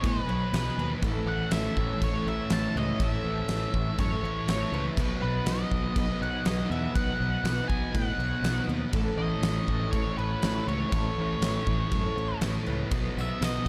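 A huge, up-front arena drum kit with a fat snare and punchy kick drives this dreamy, wistful shoegaze and dream pop excerpt at 121 BPM in a straight 4/4, joined by a growling, overdriven fingered bass and a thick, dark fuzz guitar riff bathed in lush chorus, with a very quiet crunchy overdriven guitar adding a second riff beneath. Over them an octave-fuzz lead guitar carries the melody through distortion and analog delay, while a mellow, retro pulse-width pad holds sustained chords and a bright, octave-doubled twelve-string acoustic picks shimmering arpeggios in the background. The dark production keeps reverb to a minimum, and a jingly tambourine slips in only at 13.2 seconds just before the cut.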